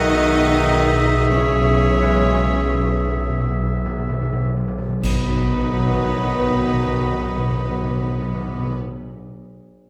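A rubato 4/4 pulse drifts between 36 and 49 BPM and slows through the opening 5 seconds beneath a timpani fill, framing a lyrical, tender slow romantic movement for symphony orchestra in B major, cut from a longer piece. A smooth violin section carries the melody while a clear oboe solo, a second violin section, a pure straight-toned flute and a warm clarinet weave second lines, over a very quiet, expressive viola section with portamento, dark distant French horn chords, and a bass of rich cellos and a prominent double bass section. Warm trombones add sustained chords from 2.0 seconds, and at 5.0 seconds close, dry clash cymbals and concert bass drum mark a full-orchestra accent as the harmony settles from E over B onto B, all within a wet recital-hall reverb.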